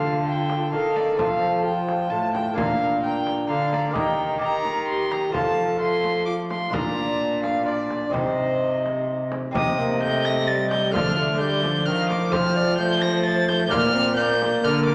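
Courtly and solemn, this renaissance-style consort dance in 3/4 at 130 BPM in C dorian sets an up-front, gut-string violin melody over an airy, chiffy alto recorder second line, a delicate fingerpicked lute in the background, soft-attacked trombone and bowed cello bass, with a deep frame drum played with soft hands entering at 0.5 seconds, all in a wet recital hall reverb, cut from a longer piece.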